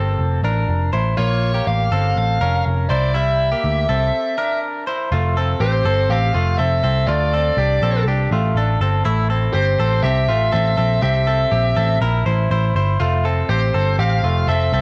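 A round, punchy muted electric bass sits up front in this youthful, bright piece of jangly indie pop at 122 BPM in F major, with a clean, twangy direct-recorded guitar playing compressed arpeggios through cassette tape and tape echo. From 1.2 seconds a bluesy overdriven lead guitar carries the melody, its dark distorted tone also coloured by cassette tape. The home cassette recording has light reverb and a brief break at 4.1 seconds before the second section opens at 5.1 seconds, all within a fragment cut from a longer piece.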